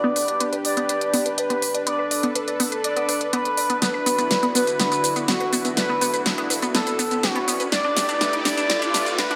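Bathed in a moderate digital room reverb, this hopeful, expansive progressive house build-up, cut from a longer piece, sets a smooth, mellow sawtooth synth lead with vibrato, subtle chorus, vintage 12-bit sampler grit and dub echo over a lush, detuned supersaw pad and a crystalline wavetable pluck playing arpeggios with ring modulation, chorus and dub echo, both pad and pluck carrying filter sweeps, while an up-front pop drum kit of fat snare, crisp hats and shaker enters at 0.2 seconds and moves into a fill from 3.8 seconds, and a riser joins in the background at 6.1 seconds.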